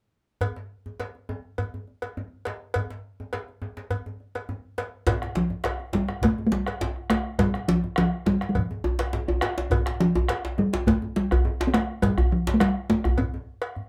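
Driving and earthy, this West African traditional drum ensemble piece moves at 103 BPM in a straight 4/4, cut from a longer performance and centred on F major pentatonic. It opens with a metallic, close and dry cowbell alongside a warm, deep djembe whose soft hand strokes come across compressed and saturated. At 5.1 seconds the texture fills out as a round bombo, heard with live room sound, joins with a second, medium-tuned djembe that sits up front and plays louder than the first. Just after, at 5.4 seconds, a talking drum takes the melodic role, ranging from F3 to C4 with a short ring and a close, forward presence that makes it the most prominent voice. The whole ensemble sits in a moderate small room ambience that keeps the acoustic drums natural and grounded.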